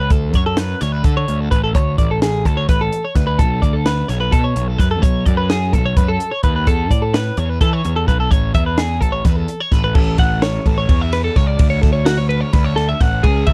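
Driving along in a straight 7/8 at 256 BPM counted in eighths, this short math rock and midwest emo cut from a longer piece feels bright and intricate, moving in A major through Dmaj7, Bm7, Esus4 and Amaj9 before settling on A6 at 10.0 seconds. A warm, clean, compressed twelve-string electric guitar picks arpeggios between F#4 and F#5, while an up-front picked bass with round, overdriven fuzz anchors the low end. A compact cocktail kit enters at 0.1 seconds with a punchy kick, high-tuned snare and dark cymbals, all in a dry, dark, warm-toned mix with little reverb.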